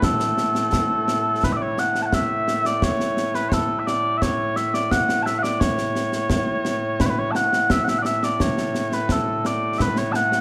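A recital hall's moderate reverb surrounds this short, stirring cut from a longer piece of Scottish traditional pipe music in a straight 2/4. Mellow small bagpipes carry the proud melody up front, their sweet, continuous tone shaded with vibrato across a range from A2 to A5. Concert snare and bass drum, acoustic and close with dark cymbals, play beneath them throughout the 10.4 seconds.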